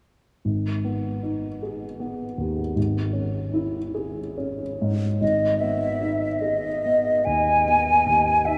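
Romantic classical duo in G# minor, yearning and melancholic, unfolding in a rubato 12/8 at 46-53 BPM in dotted quarters, tuned to A4 = 438 Hz, where a dark, mellow baby grand piano with audible action noise lays down intimate low accompaniment from 0.4 seconds, moving from G#m to C#m/G#, before an airy, hollow concert flute with vibrato and a crisp attack enters up front at 5.2 seconds with a high melody, both bathed in a huge, wet reverb that places them in a vast, echoing space.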